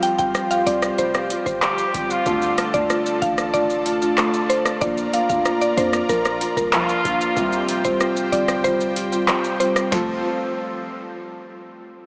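Soaked in a huge, dreamy reverb and heard as if through a small speaker, this bouncy, summery dancehall excerpt moves at 94 BPM in 4/4 with a straight feel in F major. A booming analog drum machine carries kick, snare, rim click, handclaps, hi-hat and shaker, with a deep kick, while the tonal snare, claps and metallic hats sit in a short room. A boomy, sine-based 808-style bass sits low in the background from 0.2 seconds. A round, woody FM pluck carries the melody through chorus and a diffuse ambient delay, over a vintage marimba with rosewood bars and a detuned sawtooth pad, both pumping with the sidechain. A fingerpicked nylon-string guitar plays full-bodied arpeggios with lush chorus and delay beneath, while a clear, punchy horn section with light vibrato adds a second line briefly at 1.6 seconds and again from 6.7 seconds, as the chords move from Fsus2 through Dm, Bb and Csus4 before settling on F near the end.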